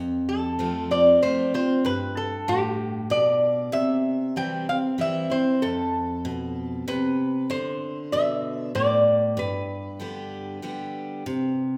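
A straight, unhurried 3/4 pulse at 96 BPM carries this sunny, easygoing country excerpt, which is cut from a longer piece and tuned to A4 = 441 Hz. A picked steel-string dreadnought acoustic guitar holds the accompaniment from the start, its full-bodied, bright tone sitting up front with audible finger squeak. At 0.3 seconds a lap resonator guitar enters with the melody, played with slide and fingerpicks, and its metallic, nasal voice stays just as forward until 10.6 seconds. The harmony moves through F, Gadd9, C, F, D5 and G before the chords drop away. A generous recital-hall reverb gives the pair a roomy, lingering bloom.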